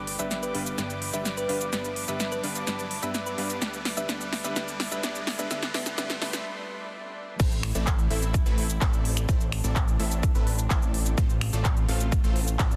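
Emotional and powerful, this festival progressive house excerpt opens with a build-up in which a clear concert grand piano, a tine-like thumb-piano synth pluck with chorus and phaser, and a filter-swept detuned supersaw stab ride over a fat analog bass, dark bowed strings floating in the background, a background riser and a drum fill from a crisp-hatted big-room kit. After a brief break at 6.5 seconds, the drop lands at 7.4 seconds as an overdriven, punchy electronic kick enters up front. The pumping bass, strings and supersaw riff drive on to the end under a dense, heavily limited master with light reverb.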